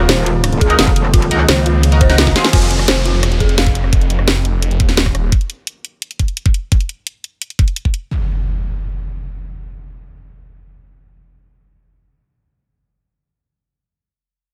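Dark technical drum and bass, tense and futuristic, opens on a drop where a snarling, overdriven saw bass growls and a metallic FM wobble bass wobbles up front over a knocking electronic kick and a layered kit with a cracking snare, hi-hat, ride, rim clicks and crash, while an eerie ring-modulated drone, a mellow detuned synth bell playing arpeggios, and a nasal band-passed chord stab with phaser and tape echo sit in a dry mix, before a drum fill at 2.3 seconds leads into a downlifter and impact at 2.5 seconds.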